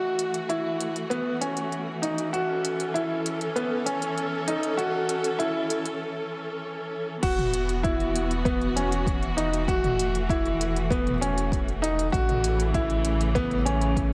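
A bright upright piano with woody action noise carries an echoing riff up front, with lush, bowed symphonic strings holding sustained chords that pump under sidechain, in this hopeful, tender piano-and-strings electronica cut from a longer piece at 98 BPM in 4/4. An overdriven electronic drum kit with smooth hats, crashes and toms joins at 0.2 seconds, building through a short break before the drop at 7.2 seconds, where a round, deep sine sub bass and an overdriven electronic kick enter. The harmony rests on Esus2 before moving to A, all set in a moderate concert-hall reverb.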